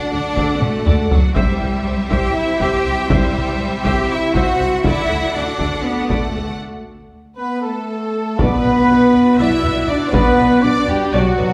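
Heroic and epic, this excerpt of a cinematic orchestral film score drives along at 240 BPM in 7/8 in B phrygian: an intense, vibrato-laden violin section carries the melody over a focused second violin line, smooth background violas, a distant string section and mellow French horns holding sustained chords, with rich cellos and bowed double basses anchoring the bass, while a close, dry taiko ensemble struck with hard sticks enters at 0.4 s and plays drum fills at 0.6 s and 7.6 s, with a break running from 6.6 s. A pure, crisp-attacked flute line and smooth-topped trumpet stabs arrive at 7.4 s, all set in the reverberant space of a recital hall.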